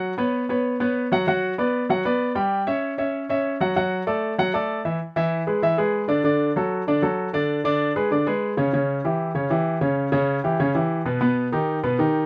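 A straight 4/4 pulse at a brisk 193 BPM drives this festive, sunny Latin excerpt, carried entirely by a solo baby grand piano whose polished, present tone sits up front in a dry, close 1970s-style studio sound with moderate booth ambience. The piano ranges from B2 to G5, moving from an F#sus4 opening through Bm, Em69 and D before the second section arrives at 5.0 seconds on E7. From there it colours the harmony with Bm69, C#dim and Em6, finishing on a Baug chord.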